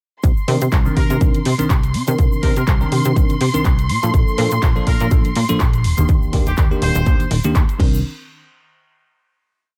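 A punchy electronic kick drives this funky, groovy filtered disco house piece at 123 BPM in C dorian, with a plucky, saturated analog bass jumping octaves beneath bright programmed hats, handclaps, crash and a background egg shaker, while the bass, hats, cymbals and shaker pump against the kick. A bell-like tine electric piano with phaser plays dotted-rhythm chords from 0.5 seconds, a dark violin section holds a high note over Cm9, Bbmaj7 and Ebmaj7, and from 1.0 seconds a nasal muted trumpet section adds short answering phrases with 12-bit sampler grit and tape echo. The drop runs to 8.0 seconds before a final hit, all set in a small, lightly reverberant room.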